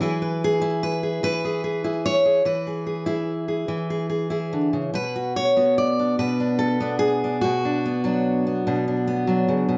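Intimate and haunting, this folk excerpt in B dorian drifts in a rubato 6/8 at about 49 BPM, with a lone fingerpicked steel-string acoustic guitar playing up front, its warm auditorium-body tone and audible finger squeaks caught by close, detailed microphones, a slapback echo trailing its notes, and a small room's modest reverb around it as the harmony moves from E to Bm at 4.9 seconds.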